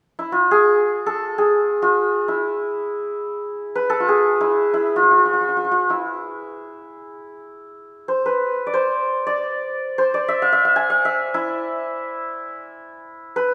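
Persian music in free time, this stately, passionate passage is set in dastgah Homayun on E and is cut from a longer piece. A solo santur carries the melody from 0.2 s to 13.5 s, moving between E4 and G#5. The acoustic, hammered strings sound bright and shimmering, with a ringing quality that hangs in the air. The instrument sits up front in the mix, heard within a wet scoring stage reverb that decays over about 1.5 seconds. The whole stretch unfolds as a single section, giving the phrases room to breathe at their own unmeasured pace.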